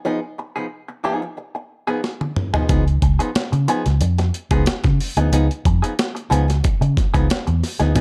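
Funk with a strutting, gritty mood, this excerpt opens on a dark, clean hollow-body jazz guitar run through wah, picking over Fm7b5. A compressed, pitched-up breakbeat kit with a thumpy kick and tape-warm grit enters with a drum fill at 2.0 seconds, and a round, punchy foam-muted bass joins at 2.7 seconds as the harmony settles on Db9. The dark production sits in light digital ambience, with all three parts up front.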